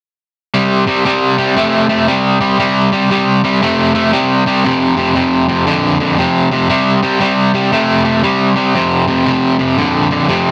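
Gritty and swaggering, this short blues excerpt moves at 117 BPM in 4/4 with a swung eighth-note feel. A lone crunchy overdriven electric guitar, bright and picked, sits up front and plays from 0.5 to 10.5 seconds, carrying a tremolo effect as it works through power chords on C and F. A light reverb frames the sound, and the clip is cut from a longer piece.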